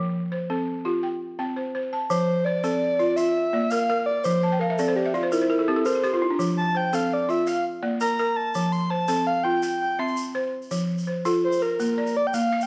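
A straight 12/8 pulse at 112 BPM in dotted quarters drives this hypnotic piece of West African string and xylophone music in F major, cut from a longer piece. Woody, buzzing balafon arpeggios struck with rubber mallets play alone at first, dry and up front. At 2.1 seconds a breathy, flute-like synth lead with a soft attack, chorus and vibrato enters with a sustained solo melody, joined by a grainy, distant egg shaker, while the balafon adds a fill at 4.4 seconds inside a moderate recital hall reverb.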